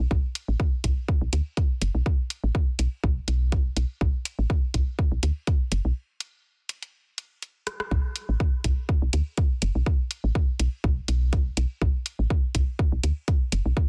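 A woody, dark FM bass with sidechain pumping opens this sparse, clinical minimal techno cut in B minor at 123 BPM with a light 16th-note swing, joined almost at once by a punchy, up-front electronic kick and a house kit of bright hi-hats and rim clicks, with a break from 6.0 to 7.9 seconds and a drum fill at 7.7 seconds, all in a dry, dense, heavily limited modern master.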